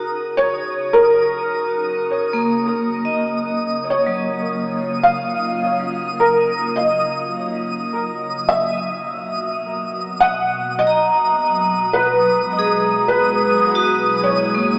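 Melancholic and serene, this ambient fragment is cut from a longer piece and drifts along in a straight, unhurried 4/4. A felt-muted upright piano carries the melody up front, its mellow, intimate tone touched by audible action noise and treated with ensemble chorus, shimmer reverb and tape echo. Beneath it, an evolving wavetable pad fades in across the whole passage, holding sustained chords with a slow attack and long release; its detuned unison voices morph through ring modulation, phaser, chorus and shimmer. A vibraphone struck with hard mallets spins metallic, ringing arpeggios with a fast motor vibrato and an airy sheen, echoed on tape, while a granular texture twinkles high above with an octave-up shimmer and FM sparkle. The harmony moves from Ebm9 to Emaj9 at 8.5 seconds, and the dreamy mix is soaked in a long plate reverb yet keeps a small-speaker sound.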